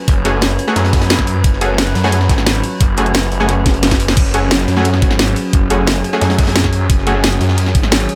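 A straight 4/4 groove drives this dark, technical drum and bass excerpt, built from a knocking electronic kick, an up-front kit with a cracking snare, hi-hat and crash cymbal, and a very quiet, gritty breakbeat kit with a rolled-off top, with a drum fill at 3.7 seconds. Underneath, a snarling, growling distorted saw bass sits sidechain-pumped and up front, while an eerie, metallic FM drone warbles on sustained chords through chorus, phaser, reverb and its own pumping. Bold, bright orchestra-hit-like synth stabs with a filter pluck, reverb and delay punctuate the mechanical, aggressive mood, all set in a light reverb.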